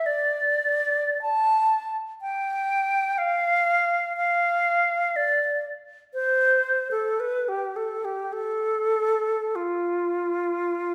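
A rubato 3/4 pulse drifting between 45 and 63 BPM carries this meditative, yearning classical passage for unaccompanied alto flute. The airy, bright flute sits up front with vibrato and soft attacks, ranging from F4 to A5 across its 10.9 seconds, and is wrapped in a wet recital-hall reverb of 1.3 seconds, heard from further back in the room as a fragment cut from a longer piece.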